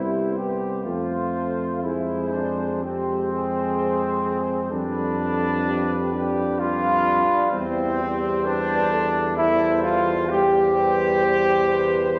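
A tender, hymn-like classical brass band excerpt in C major, moving in a rubato 3/4 at 64 BPM, opens with the whole ensemble together: a clear, tight trombone section sits up front with the accompaniment, while a mellow, close-miked trumpet section carries the melody in the background over a warm French horn second line, both shaded with light vibrato, a close-miked euphonium adds further accompaniment, and a distant, roomy tuba holds the bass with light vibrato, inside a wet scoring-stage reverb as the harmony moves from C through F and F minor to G7 over F and C over E.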